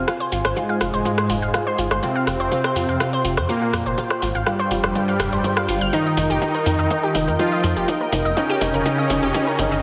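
A straight 4/4 pulse at 123 BPM drives this dark, melancholic melodic techno excerpt in F minor, where an up-front deep house drum kit of metallic hats, rim click, shaker and filtered toms plays a fill through the whole build-up beneath a rumbling detuned saw bass, a smooth soft supersaw melody under a filter sweep, round analog pluck arpeggios with chorus and delay, and a lush, warbling unison pad holding chords in the background, the harmony moving from Fm to Ebadd9/F at 5.9 s before a very quiet riser enters at 7.8 s, with the mix set in a wet room reverb and a heavily compressed radio sound.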